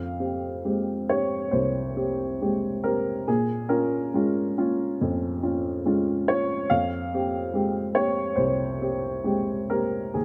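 The rhythm moves in an unhurried 4/4 at 70 BPM, played rubato so the pulse breathes freely. This neoclassical minimalist piece in F minor feels intimate and reflective, and the tuning sits slightly sharp at A4 = 441 Hz. A dark upright piano plays solo through the whole 10.2-second fragment, ranging from C2 to F5, with a mellow, woody, slightly detuned voice and a short sustain that gives it a worn, boxy character. The harmony rests on Fmadd9, shifts to Bbm7 at 3.3 seconds, and returns to Fmadd9 at 6.7 seconds. The piano sits up front in a light reverb, and the passage is cut from a longer piece.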